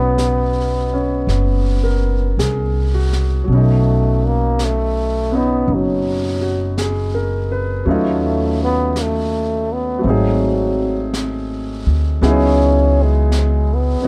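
Intimate and late-night, this excerpt from a slow jazz ballad in B major moves at 55 BPM with a gentle swing, its dark production sitting in light reverb. A bright, vintage-toned trombone with light vibrato carries the melody up front and takes a solo from 3.5 seconds over chords like D#m7b5 and G#7b9, while a clear baby grand piano, its action noise audible and its notes sustaining long, provides the accompaniment. A woody, growly pizzicato upright bass sits forward in the mix, and a small-room brush kit with a high-tuned snare and hi-hat enters softly at 0.2 seconds.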